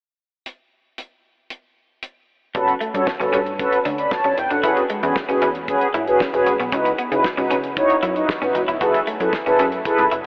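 Round, dark synth brass sits up front in this slick, funky early-eighties boogie funk excerpt, its detuned, brassy chords thickened by chorus over a progression that moves from Gmaj9#11 through E69 and C#m11 to F#m11. A damped 70s kit with a fat snare and tight kick plays alone from 0.5 seconds until the punchy, plucky analog bass and a slightly broken-up, picked electric guitar riff with analog chorus join at 2.5 seconds, the guitar sitting in the background. The whole mix is dreamy and soaked in a huge ambient reverb, filtered through a telephone sound.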